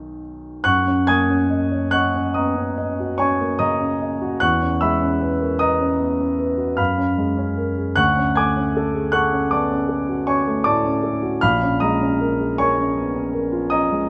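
Classical impressionist solo piano, serene and luminous, unfolds in a slow, rubato 9/8 at roughly 43-55 BPM counted in dotted quarters, centred in F# major. A single concert grand carries the whole fragment, which is cut from a longer piece, sounding up front with a deep bass and long sustain across a range stretching from A#1 to G#6. The harmony drifts through rich, colourful chords, opening on Bmaj7 before settling onto F#6 at 0.7 seconds, then moving through E69 and F#maj9 to a striking turn to Dmaj7 at 8.0 seconds and closing on A#m7. Close, detailed miking captures the instrument intimately, while a moderate concert hall reverb with a 2.4-second decay surrounds it in a gentle halo of space. The result is a suspended, glowing moment that feels unhurried and quietly radiant.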